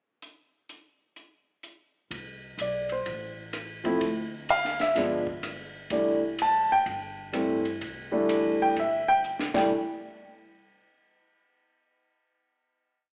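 A compact, dark cocktail drum kit with a high-tuned snare and a ride cymbal pattern opens at 0.2 seconds, a woody, growly pizzicato upright bass enters in a two-feel at 2.1 seconds, and a warm baby grand piano joins at 2.6 seconds, sitting up front with audible action noise and playing a bebop-style theme with syncopated comping in rootless voicings. It is a relaxed, playful swinging jazz piano trio heard through a wet recital hall reverb and an AM radio sound, closing with a drum fill at 9.2 seconds before a final hit.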